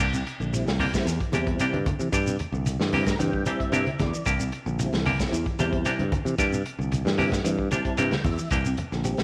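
A joyful, funky afrobeat groove at 113 BPM opens on a C9 chord with twangy, picked electric guitar stabs shimmering with tremolo, a bright fingered bass up front, and a gritty, saturated breakbeat kit with a punchy kick and dark cymbals. A clean guitar plays arpeggios in the background through spring reverb beside a grainy shekere, while a round, mellow tonewheel organ with chorus vibrato and a slow rotary speaker adds accompaniment and fills at 2.7 and 7.5 seconds. Low-tuned, thick-skinned congas join at 0.8 seconds, sitting farther back, and a moderate plate reverb lends the straight 4/4 groove in C mixolydian a polished studio sheen.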